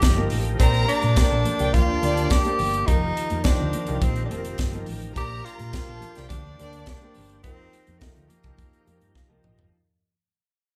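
A breathy, up-front tenor saxophone carries the melody in this glamorous, celebratory disco cut at 105 BPM in Bb major, backed by a tight funk drum kit with a high-tuned snare, a dark, round fingered electric bass and a concert grand piano whose action noise can be heard. A lush, bowed violin section adds a second line from 0.6 to 6.8 seconds, while a gritty, overdriven tonewheel organ with chorus vibrato and slow rotary speaker holds sustained chords in the background beside ringing, high-tuned congas. The band plays live in one room with moderate large-studio reverb over a fade-out, and a piano fill at 8.9 seconds and a drum fill at 9.2 seconds close this short section cut from a longer piece.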